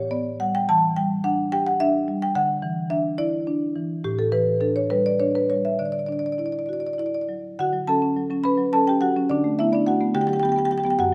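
A solo marimba played with medium mallets sits up front in this flowing contemporary classical fragment, its rosewood bars giving a woody, warm tone across a span from F#2 to B5. The rubato 6/8 phrasing moves through open, colourful harmonies such as Asus2, Em7 and Dadd9, then shifts at 7.6 seconds into a second section built on Dmaj7, Bm7/D and Gmaj7/D. A moderate recital hall reverb surrounds the instrument, and the passage is cut from a longer piece, ending at 11.1 seconds.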